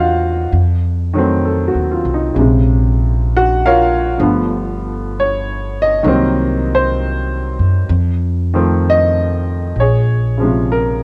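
A slow swing at 65 BPM in 4/4, with the eighth notes lilting lazily, sets up this melancholic, smoky jazz ballad in Bb minor. It is a short excerpt cut from a longer piece, running about 11 seconds. A clear baby grand piano carries the accompaniment up front, its natural tone and short sustain voicing a minor-key progression that moves from Cm7b5 and F7b9 to Bbm7, then through G7 and back around to Bbm7. Beneath it, a pizzicato upright bass with steel strings sits just as close, woody and growly with a bright edge, playing in its low register throughout. The room is nearly dry, and the whole recording carries the worn, warbling character of old cassette tape, with a pitch drift that adds to the late-night haze.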